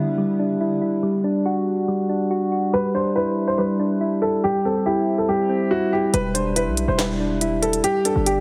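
Soft, round electric-piano-like synth keys open this brooding hip hop and trap excerpt on their own, their chorused tone muffled by a low-pass filter as a filter sweep runs under the opening bars. The tempo is 141 BPM with a half-time feel in E minor, and the harmony circles through Em7, G5 and C. At 2.7 seconds a dark grand piano carries the melody, mellow and intimate with audible action noise, short sustain and a digital delay trailing its notes. The hard-hitting part arrives at 6.1 seconds, when a punchy, heavy 808-style bass with a noise layer drops in alongside an electronic trap kit of sharp snare, crisp hi-hats and handclaps. Light reverb and digital ambience surround the parts, while the overall sound is heavily compressed in a radio style.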